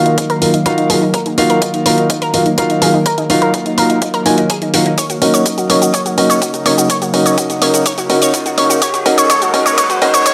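Heard through a moderate digital room ambience, this driving, expansive progressive house build-up is cut from a longer piece, with filter sweeps running across both the pluck and the pad throughout. Up front, a soft, felt-muted upright piano plays stabs with tape echo and audible action noise, while a round, detuned analog pluck spins arpeggios and an evolving, warbling wavetable pad holds chorused chords; all three pump against the sidechain. Layered electronic hi-hat and cabasa, re-recorded in a large room, keep time, a punchy electronic kick sits in the background, a drum fill arrives at 5.0 s, and a riser enters at 7.6 s.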